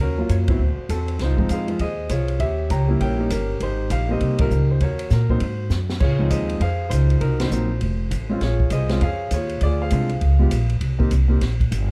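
The recording is dry and dark, with the players heard close and little room sound around them. This short cut from a longer jazz piano trio piece swings at 200 BPM in 4/4, in a sophisticated, playful mood. The concert grand carries the melody with a warm, natural tone and deep bass, set up front, while the pizzicato upright bass, woody and thumpy on gut strings, sits just as close and carries the most weight of the three. The acoustic kit enters at 0.3 seconds and stays a little further back in a small room, with dark cymbals across ride, crash and hi-hat, a high-tuned snare and a boomy kick. The trio hits shared accents along the way, and a drum fill at 5.7 seconds leads into the second half of the passage. The harmony moves through rich extended chords such as Ebm9, Dbmaj9 and Bbm9 before settling on a bare C7 near the close.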